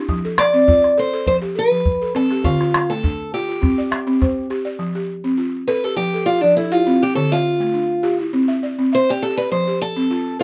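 A buzzing, dry balafon opens this short cut from a longer piece of West African string and xylophone music, playing arpeggios with soft rubber mallets across a range from D3 to E5. A small, compressed and saturated calabash joins almost at once with percussion and falls away at 4.6 seconds, while a picked steel-string acoustic guitar enters at 0.4 seconds with the melody. The guitar has a boxy, parlour tone with old strings and a woody character, and it sits up front beside the balafon, taking a solo from 4.8 seconds to the end. At 102 BPM in 4/4, with a gentle swing on the sixteenths, the music feels hypnotic and joyful, moving in F lydian over a cycle of F, Dm and C. Light reverb gives the sound a touch of air.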